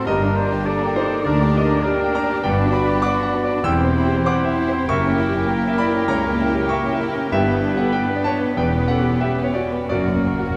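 A bright, brilliant concert grand piano leads up front with the melody, its deep bass and short sustain ringing over a lush, passionate orchestral bed in a rubato classical passage cut from a longer piece, moving between 83 and 103 BPM in 4/4. Behind it, a floating sul tasto violin section also carries the melody, while an airy flute ensemble, a distant, roomy oboe, a very quiet clear clarinet and a second violin section weave second lines. Intimate violas with vibrato, a mellow, very quiet French horn section holding chords, rich cellos and distant double basses fill out the sound on a moderately reverberant scoring stage, and round, soft-mallet timpani enter at 9.9 seconds for a closing fill as the harmony arrives on F#.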